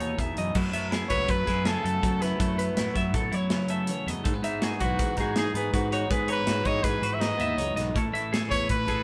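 Math rock and Midwest emo at 162 BPM in 5/4, intricate and wistful, this short excerpt pairs two bright, twangy twelve-string electric guitars (one comping, one spinning high arpeggios) with a dark, round fuzz bass, an up-front studio drum kit of tight kick, snare, hi-hat and crash, and a clear, close-miked trumpet with light vibrato that enters at 1.1 seconds to carry the melody over Emaj7, F#m11, Emaj9 and Amaj9 chords, all captured as a band playing live in one room with light reverb.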